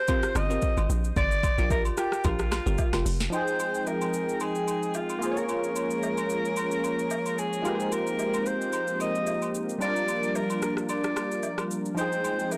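A blown-out, overdriven mix with light reverb gives this soulful, hypnotic amapiano clip, cut from a longer piece, a gritty sheen at 111 BPM in F minor, with a swung 16th-note feel. An alto saxophone carries the melody throughout, vibrato-laden and up front yet roomy and distant in pop style, with delay trailing its lines. The opening drop pairs glassy, crystalline wavetable pluck stabs, treated with chorus and delay, and a bouncy, hollow log drum bass that enters at 0.4 seconds and sits prominently before both fall away around 3.3 seconds. From 3.3 seconds, round, detuned sawtooth keys with a filter sweep and chorus take up the accompaniment, joined shortly after by a mellow, flute-like pad whose slow-attack chords pump against the sidechain. Underneath, an electronic afro-pop kit drives with a deep kick, metallic hats, rim clicks, shaker and a sharp, soft-clipped snare. Compressed, saturated acoustic agogo bells and woodblock sit in the background, while the harmony moves through Abmaj13, Gm7, Fm9 and Bbm7.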